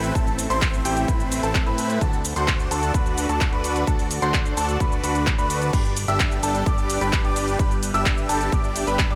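Set in light reverb, this euphoric, uplifting festival progressive house excerpt in G major at 129 BPM drives a huge, bright detuned supersaw lead riff with phaser and delay up front over a punchy layered electronic kick entering at 0.2 seconds, a big-room dance kit of crash, handclaps, hi-hat and shaker, a fat saturated analog bass, a lush slow-attack pad with chorus and phaser in the background, and boxy baby grand piano arpeggios carrying 12-bit sampler grit, with sidechain pumping on the pad, piano, lead and bass through chords moving from Am to D to G.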